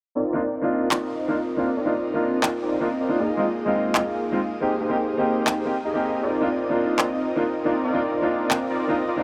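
A moderate shimmer reverb, about 6.2 seconds in decay, bathes this bittersweet, emotional future bass fragment, taken from a longer piece, at 158 BPM in 4/4 with a half-time feel in C minor, tuned to A4 = 439 Hz. A smooth, detuned unison supersaw with a fast attack carries the sustained riff up front, while a polished, present baby grand piano supplies accompaniment; both run through low-pass filter sweeps and digital delay from 0.2 seconds to the end. Layered electronic handclaps enter at 0.9 seconds, sitting lower in the mix, as the harmony moves from Cm11 through Bb7sus4 and Abmaj9 back to Cm11.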